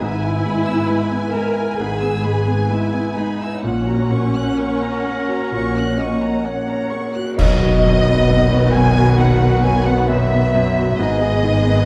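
An uplifting, hopeful cinematic orchestral cue in a loose, rubato 4/4 opens with a full string body: a dark violin section carries the melody with vibrato and portamento, while a second violin section sits close and in the background, and lush, expressive violas fill the middle. A brilliant, open baby grand piano supports them, and bowed cellos and an even, smooth double bass section anchor the low end. At 3.6 seconds, a cymbal swell, bright clash cymbals and concert bass drum enter, close and dry, and at 4.6 seconds a distant, roomy solo clarinet adds a classical-style second line. At 7.4 seconds, the music arrives on a band accent as an airy, hollow flute takes up a tongued line and timpani sound in the background with medium mallets. The harmony moves from E/G# and F#/A# to a B major resolution before ending on G#m, all within a moderate scoring-stage reverb and a warm production.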